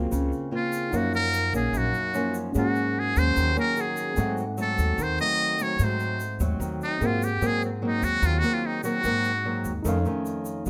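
Smooth and intimate, this bossa nova excerpt at 148 BPM features a buzzy, metal-muted trumpet up front soloing from 0.6 seconds, over fingerpicked nylon-string guitar, woody pizzicato upright bass on gut strings, a worn, slightly out-of-tune tine electric piano in the background and a grainy tube shaker, all caught by close, detailed microphones with light reverb as rich chords like Gbmaj9#11, Ab7b9 and F7b13 pass by.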